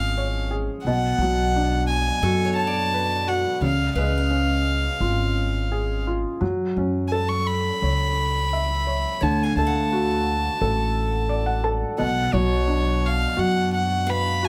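In a straight 4/4 at 86 BPM, this reflective, melancholic acoustic folk-pop ballad moves through C#, Bmadd9, F#m7, D and Bm in a short passage cut from a longer piece. A single bowed violin carries the melody up front, played sul tasto with a soft attack, its pure, floating tone ranging from C#5 to C#6. Beside it, a felt-muted upright piano supplies mellow, intimate accompaniment, with its thin felt and audible action noise close to the ear. A pizzicato upright bass on steel strings anchors the low end with a woody, dark sound. At 2.2 seconds a bright, picked steel-string acoustic guitar enters in the background with arpeggios, and light reverb gives the room a gentle sense of space.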